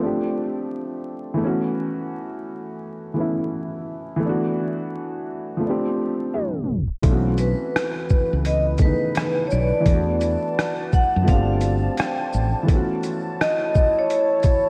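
Lo-fi hip hop at 85 BPM with a mellow, cosy mood and swung sixteenths, cut from a longer piece, opens with a dark, woody upright piano playing suspended ninth chords alone until a tape stop at 6.3 seconds gives way at 7.0 seconds to gritty, pitched-down boom bap drums with a thumpy kick and a round, punchy fretless bass. A ringing metallic vibraphone melody with slow motor vibrato follows at 7.4 seconds, and a deep, moody detuned pad enters at 7.7 seconds, all set in a dreamy hall reverb with vinyl crackle.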